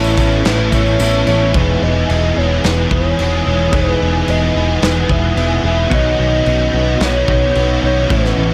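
Shoegaze and dream pop rock at 110 BPM in E major, this blissful, wistful fragment of a longer piece sets a warbling, mellow synth lead with chorus and slapback echo over an ethereal, airy pad that shimmers through phaser and ensemble chorus behind the mix. A biting overdriven guitar riff and a compressed, direct-recorded clean guitar veiled in reverse reverb ring out alongside a very quiet, twangy twelve-string electric playing arpeggios, all anchored by a deep, round dub bass sitting up front. A loose indie drum kit with dark cymbals and a punchy kick stays in the background, while a jingly tambourine sounds only until 1.3 s as the chords move from Aadd9 to Emaj7 at 1.5 s and Badd9.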